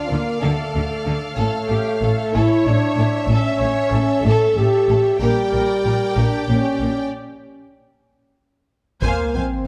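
Cinematic, epic orchestral film score in a slow 6/8 at 63 BPM, dark and dramatic, cut from a longer piece. Intense, distant violins carry the melody over a focused second violin line and lush viola accompaniment, while a mellow, vintage-toned French horn section sits up front holding sustained chords. Double basses and a smooth cello section in the background anchor the low end, with the harmony moving from D minor to A and then G minor over B flat. The cellos drop out at 6.9 s as the music falls into a break, and at 9.0 s a taiko ensemble struck with heavy sticks lands with a huge, bright sub drop on an F minor impact. A moderate recital hall reverb gives the strings and horns a spacious, concert-like depth.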